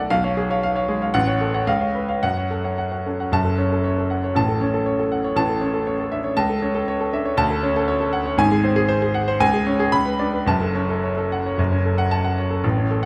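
A classical virtuoso piano study in 2/4, this brief excerpt cut from a longer piece feels brilliant and sparkling, its pulse moving with a flexible rubato. A clear grand piano plays alone throughout its 13.1 seconds, spanning from deep bass at F#1 up to B5. The instrument sits up front and sounds natural and intimate, with the audible noise of its action adding a close, tactile presence. A wet recital hall reverb lends the sound a sense of space around the instrument. The harmony moves through dominant-seventh tension resolving to the home minor chord, then travels through brighter major colours, including a Dmaj7 at 7.4 seconds, before settling back on the minor tonic at 10.5 seconds.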